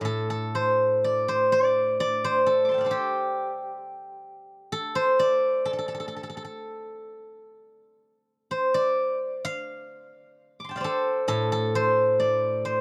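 This Chinese traditional solo for steel-string zither, a contemplative and elegant 12.8-second fragment of a longer piece, moves in a free rubato around 64 BPM in 2/4, the fingerpicked instrument sounding warm, silvery and ringing from A2 up to D6, placed up front in a dry, close 1970s-style studio recording with small room ambience.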